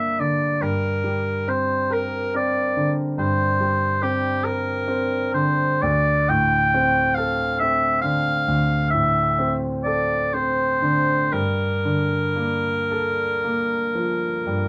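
Oboe and concert grand piano begin together in this impressionist classical duo, a short excerpt cut from a longer piece. The oboe carries the melody in its middle register with a clear, classical-style tone that sounds distant and roomy, yet it sits up front and slightly above the piano. Beneath it, the piano accompanies in a deep, open bass reaching up into the middle range, set in 12/8 with a free, rubato pulse. The harmony drifts through dusky minor colours, shifts to a darker dominant sound at 5.8 seconds, and settles on a rich minor ninth chord at 11.3 seconds. Light reverb frames the pair, and the mood stays mysterious and wistful throughout.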